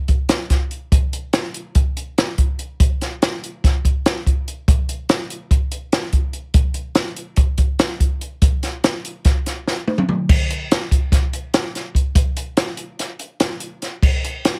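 This rock excerpt has a playful, bright mood and runs at 288 BPM counted in eighth notes, in a straight 9/8 metre. A compact cocktail drum kit carries the whole recording from 0.1 seconds, playing crash cymbal, hi-hat, kick drum, snare drum and toms. The kit sounds acoustic and roomy, with a punchy kick, a high-tuned snare and dark cymbals under a rolled-off top. A drum fill at 9.7 seconds leads into a new section at 10.3 seconds, which carries on until the cut near 14.6 seconds. The overall sound is dry, with little reverb, and heavily compressed in a radio-like way.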